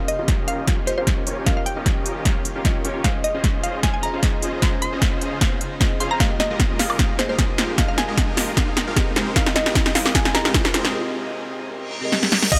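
Lightly reverberant, this dreamy, emotional future bass excerpt at 152 BPM in a half-time 4/4 feel is a build-up, with an overdriven, punchy electronic kick and a layered big-room dance kit of crisp hats, punchy snare, crash and woodblock sitting up front as if re-recorded in a large room. Huge, lush supersaw chords hover in the background through a cassette-tape colour and a low-pass filter sweep, pumping with sidechain, while glassy digital keys with chorus fill in the accompaniment. A woody, round mallet-like synth pluck carries the melody with chorus and tape echo. Beneath, a shimmering, ethereal ambient pad with a vintage warble and a deep, mellow 808-style bass stay very quiet, and a riser with reverse cymbal creeps in from 3.3 seconds. The harmony moves through Eb9, Dbmaj9, Fm11 and Abmaj9, a drum fill runs until a break at 10.9 seconds, and a lush, up-front unison pluck arpeggio lands on Eb5 at 12.5 seconds.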